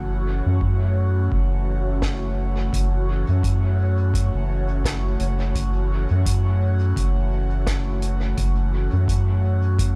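A round, nasal analog bass sits up front throughout this hazy ambient dub excerpt, holding a dark, sustained low end beneath a soft, breathy pad whose slow-blooming, detuned chords are colored by chorus and phaser. An electronic kick drum enters in the background at 0.6 s, and at 2.0 s a vintage small-room kit adds hi-hat and a medium-tuned snare with a rolled-off top, thrown into dub echo. The swung groove rests on a single minor-seventh chord, and the dry mix keeps the mood deep and close.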